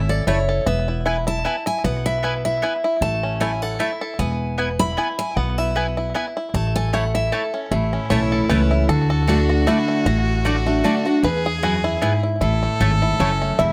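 Rustic and joyful, this swung bluegrass waltz opens with a full-bodied steel-string acoustic guitar solo, finger squeak and all, over thumpy pizzicato upright bass and woody mandolin stabs, while a twangy fingerpicked banjo with slapback echo carries the melody and takes its own solo at 7.7 s, when a clear, boxy fiddle with light vibrato joins on a second line, in a close, detailed recording with light reverb.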